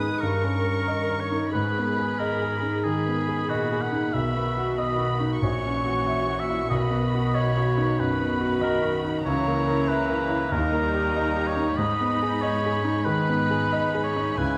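In a rubato 4/4 at 93 BPM, this brooding, passionate excerpt of a romantic movement for piano and orchestra unfolds in G# minor, with an up-front concert grand piano carrying the melody in a clear, smooth tone with deep bass, joined high above by an intimate chamber violin section bowing sul tasto with vibrato and a soft attack. A present solo oboe with light vibrato sings a second line, while a viola section in the background supplies accompaniment and a rich symphonic cello section lays down a pure, floating bass. The music sits in a moderate scoring-stage reverb, its harmony moving from D#7/G through G#m, B and F#7/A# to a closing D# and G#m.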